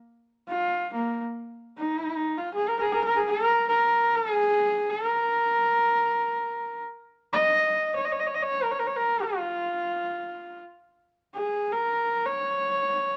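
Solemn and windswept, this excerpt of traditional Mongolian folk music unfolds in free time in a Bb yu mode, tuned slightly high with A4 at 441 Hz. A single horsehead fiddle carries it alone, entering at 0.5 seconds and bowing through to 13.2 seconds across a span from Bb3 to Eb5. Its horsehair strings give a warm, earthy, husky voice with a smooth top, and the player glides between notes with portamento. The instrument sits up front in a studio space with wet reverb about 1.0 second long. The passage is cut from a longer piece rather than presenting a complete performance.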